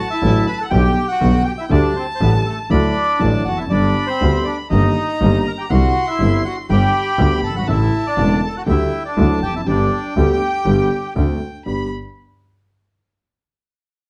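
A dark, moderately reverberant production frames this elegant, nostalgic tango in G major, moving at 121 BPM in 4/4 with a rubato feel. A reedy, smooth bandoneon carries the melody up front, while a distant, rich violin adds an expressive second line with vibrato and portamento. From 0.2 s, an intimate vintage concert grand with deep bass and audible action noise supplies the accompaniment, and a clear, intense bowed double bass sits forward beneath it, closing on a D7 to G cadence at 11.7 s in this fragment of a longer piece.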